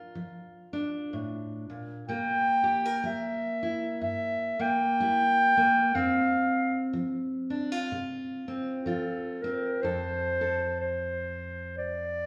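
Set at a slow 62 BPM in 4/4 with a lilting swing on the eighth notes, this gentle, pastoral acoustic folk fragment is drawn from a longer piece in F major, tuned slightly sharp to A4 = 442 Hz. A fingerpicked steel-string dreadnought guitar opens alone, its full-bodied tone sitting up front as it carries the accompaniment through a Bb chord, then C7, F5 and finally F. At 2.1 seconds a clarinet enters with the solo melody, its shadowy, soft-attacked voice played in a classical style and placed up front, clearly louder than the guitar. At 9.8 seconds the music moves into a new section that resolves on F. The duo sounds as if it is playing live together in one room, wrapped in a generous large-studio reverb that lends the intimate performance a spacious glow.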